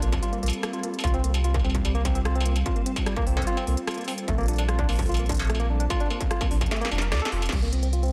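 Intricate and wistful, this IDM passage, cut from a longer piece, sets a glassy, ethereal FM pad holding slow-attack chorused chords under a barky tine electric piano whose arpeggios come lightly overdriven, filtered and echoed with digital delay. A round, up-front sub bass anchors the harmony while a distorted electronic kick and an industrial kit of clanging snare, crisp hats, rim clicks and struck metal drive the groove, with a drum fill arriving at 6.7 seconds. The dense, heavily limited mix carries light reverb and a tape-warm sheen on the drums as the chords move from Bbmaj7 through C7sus4.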